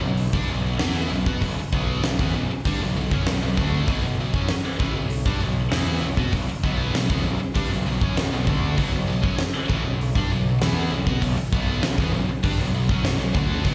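A straight 4/4 pulse at 98 BPM drives this aggressive hard rock fragment in B minor, resting on a Bm chord. A bright, scooped high-gain guitar riff, double-tracked with distortion and slapback echo, sits up front over a fuzzy, overdriven electric bass, and at 0.2 s a huge arena drum kit joins with hi-hat, a fat snare and a punchy kick. It sounds like a live gig heard through the venue's PA, with club reverb filling the room.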